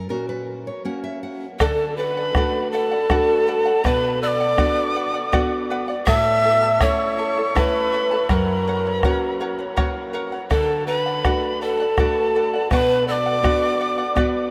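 Andean folk in triple time with an earthy, festive mood, this cut from a longer piece opens with a bright, fingerpicked nylon-string guitar fill alone before, at 1.6 seconds, a breathy, hollow bamboo pan flute takes the melody over a reedy, crisp cane quena second line, a shimmering double-strung charango and a round bombo, the ensemble gradually speeding up in a vast, echoing space of huge ambient reverb.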